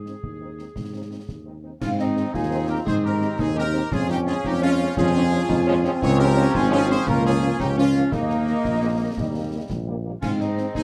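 Spirited and rousing, this military-style march for wind band moves at 114 BPM in a straight 6/8 in Ab major, with the trumpet section carrying the melody over a punchy, up-front tuba bass, a clear woodwind line, a very quiet, dark French horn accompaniment and close, dry concert snare, bass drum and clash cymbals with dark cymbal tone. At 1.8 seconds an airy, hollow flute section joins in the background alongside a euphonium line and clear trombone chords, as the harmony travels through Db and Bbm/Db to an Ebsus4 and Eb before settling on Ab at 10.2 seconds. The booth ambience is moderate and the production dark and warm, and the passage is cut from a longer piece.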